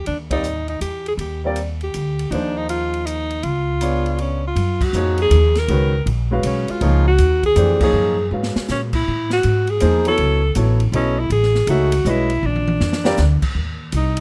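Dry-sounding, this excerpt of searching, open modal jazz swings in triple time, with a forceful, vibrato-rich alto saxophone leading up front over woody, thumpy pizzicato upright bass, a natural-toned baby grand piano in accompaniment and an airy, polished big-band drum kit with a punchy kick, as band accents land at 0.3 and 4.8 seconds and a drum fill arrives at 12.4 seconds.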